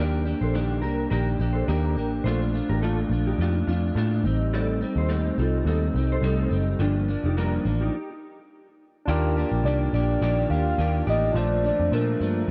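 A lightly swung 4/4 groove at 106 BPM carries this hazy, wistful indie and bedroom pop fragment, with a dark, foam-muted picked bass up front beside a slightly broken-up electric guitar through a small old amp, colored by chorus and vibrato, while a clean, fingered second guitar line adds chorus and delay over Ebmaj7, Bbmaj7, Am7b5 and Gm7. After a brief stop at 7.9 seconds, the harmony returns to Ebmaj7 as a barky, lightly overdriven tine electric piano enters at 9.1 seconds, followed by a round, octave-layered synth lead carrying the melody and a very quiet, ethereal pad. The room is dry, with little reverb.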